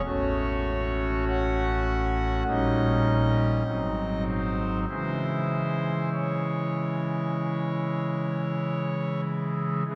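A slow, rubato 4/4 pulse at 49 BPM carries this solemn, dark chorale-style classical excerpt in C# minor, played on solo pipe organ foundation stops from 0.1 to 10.0 seconds. The thick, romantic voicing sits up front, spanning G#1 to F#5, and moves through F#m/A, D#7/A#, and G#7 before settling on C#m at 4.9 seconds. A wet church reverb with a 3.6-second decay surrounds the organ, giving it a spacious, cathedral-like bloom.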